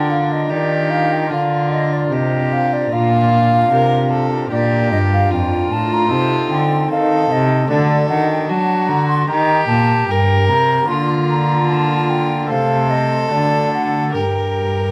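In a straight, even 4/4, this flowing, solemn baroque-style sonata movement, cut from a longer piece, sets an airy wooden flute with a crisp attack and straight tone over a gut-string violin second line with light vibrato. A pipe organ with sparkling flute stops fills in the continuo, and a nasal, reedy period cello anchors the bass. Light reverb surrounds the ensemble, lossy compression artefacts are audible, and the harmony passes through diminished chords before settling on G minor at 14.1 seconds.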